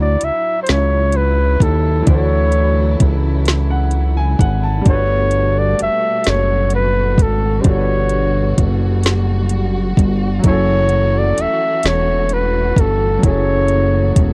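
A dry, close 1970s-style studio sound frames this slow, sensual six-eight R&B piece, where a mellow flugelhorn with tape echo, light vibrato and scooped notes carries the jazz-style melody up front over an intimate grand piano with audible action noise, lush bowed strings, a fat, saturated analog bass, and a produced drum kit with a woody snare and metallic hats that enters at 0.2 seconds.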